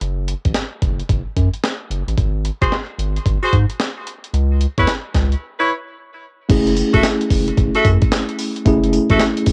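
A swung sixteenth-note groove at 111 BPM drives this confident, punchy new jack swing excerpt in F# minor, built on a gritty, pitched-up sampler-style breakbeat kit with a thumpy kick and cassette grit, underpinned by a round, deep analog bass. Tight jazz-style horn stabs, roomy yet up front, arrive at 2.6 s over G#7(no3) and C#m7, and after a brief break at 5.4 s a clean tine electric piano with medium tremolo, heard through a combo amp, enters at 6.5 s on F#m7. The excerpt has the dry, close sound of a home cassette recording.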